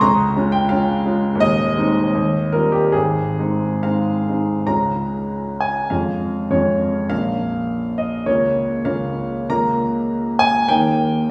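Passionate and warm, this brief excerpt of a romantic classical character piece for solo grand piano moves in 2/4 with a flexible rubato feel between 65 and 105 BPM, its present, up-front piano tone ringing with long sustain across a span from Eb1 to Bb5 as the harmony turns from Ab major to Db major at 4.7 s, all set in a wet recital hall reverb heard from further back in the room.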